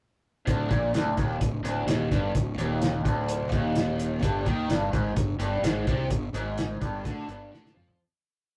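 Hypnotic and mysterious, this short psychedelic rock piece moves at 128 BPM in a straight 4/4, built on a single-note riff from a raw, bright, overdriven garage guitar with phaser, doubled by a dark, round fuzz bass. A cloth-damped, thuddy drum kit with a fat snare and tight kick plays a pop groove up front, very quiet low-tuned congas add a loose pattern, and the harmony shifts from Ebmaj7(no3)/D to G5 at 4.2 seconds. The rough rehearsal-room recording carries saturation and a moderate booth ambience, fading out from 6.1 seconds as a drum fill closes the piece.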